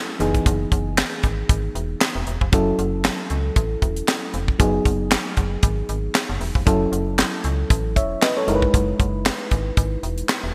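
An FM electric piano opens this slick early-eighties boogie funk clip at 0.0 s, its mellow, fast-attack chords carrying a noise layer as they decay. At 0.2 s a metallic FM bass enters low in the register, alongside a tight funk drum kit of kick, snare, hi-hat and handclaps. The kit sits up front, with a high-tuned snare, a tight kick and a dry, polished sound lifted by gated reverb. At 116 BPM in 4/4 with a light swing on the sixteenths, the groove feels funky in F# dorian, moving through chords such as Emaj7/F#, F#m7 and G#m7/F#. The bright digital production adds light small-room ambience to this short excerpt cut from a longer piece.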